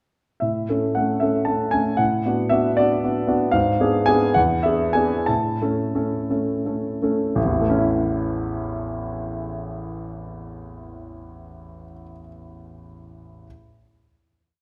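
Set in a wet recital-hall reverb, this brief, hopeful romantic character piece for solo piano in A major unfolds in a rubato 6/8 at 54-80 BPM, the warm, present grand piano placing a lyrical single-line melody over repeated chords that move from A through Bm7/A, G#dim7 and E7 back to A, slowing down from 2.8 seconds before a final chord rings from 7.4 to 11.3 seconds.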